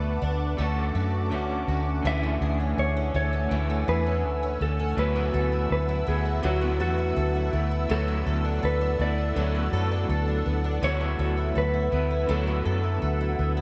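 A lush hall reverb bathes this short dream pop fragment in a soft, spacious glow, giving it an ethereal, dreamy mood at an unhurried, straight pulse. A dark, clean, compressed electric guitar carries the melody in its middle register, its fingered notes trailing digital delay. Beneath it, a second electric guitar played through a small old amp adds picked, slightly broken-up accompaniment colored by tremolo and lush chorus, while a fingerpicked twelve-string acoustic spins bright, boxy, octave-doubled arpeggios with audible finger squeak, analog chorus and delay. An airy pad of detuned sawtooth and triangle tones with a noise layer swells in slowly and sustains mellow chords, and a round, punchy, foam-muted electric bass sits up front as the most prominent part. The harmony drifts from Bm7/D to Dmaj7, then settles into F#m9/D at 2.0 seconds and D69 at 5.0 seconds, all resting on a D root.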